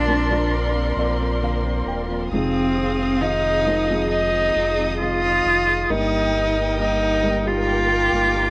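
A straight, unhurried 4/4 pulse carries this heartfelt, hopeful pop ballad fragment, which moves from Bbadd9 to Fm7 and then settles on Eb/G. Up front, a single bowed cello sings the melody with a rich, focused tone and vibrato, while a lush studio string section holds sustained chords above it with a smooth top. Beneath them, a fingerpicked, plugged-in jumbo steel-string acoustic guitar plays full-bodied arpeggios on fresh strings, touched by analog delay, and a deep sine sub bass with an added octave gives the low end a sustained, fast-attack foundation. A felt-muted upright piano sits in the background with a soft, mellow, intimate sound, adding a short fill between 0.5 and 2.3 seconds. Light reverb and the home cassette recording give the whole piece a close, homespun character.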